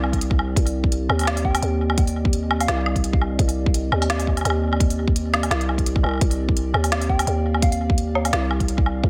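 Half-time drum and bass with a tense, cinematic mood, built on a growling, buzzy 808-style bass and a hard-clipped electronic kick up front, crisp hats, a woody snare and woodblock from an organic electronic kit with tape echo, a dark detuned analog pad pumping in the background with chorus and phaser, and a soft FM synth bell that surfaces at 1.4 and 7.1 seconds through analog delay, all set in an echo-heavy digital ambience.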